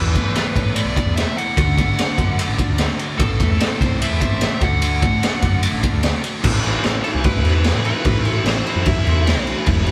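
Cool and bittersweet, this indie rock excerpt moves at 148 BPM in a straight 4/4, centered in A dorian and cut from a longer piece. A nasal lead guitar with a parked wah carries the melody between A4 and F#5, its overdriven tone trailed by slapback echo until it drops out at 9.4 seconds. Behind it, a biting overdriven guitar and a bright cranked stack guitar play riffs in the background, while a growling picked electric bass, overdriven and direct-and-amped, anchors the low end down to E1. The raw garage drum kit, acoustic and up front, brings a high-tuned snare, punchy kick, ride and crash with a gritty, saturated character and a rolled-off top. The chords move through Esus4, D, Am and D before settling on Amadd9 as a new section begins at 6.4 seconds, all captured as a band playing live in one room with moderate studio reverb.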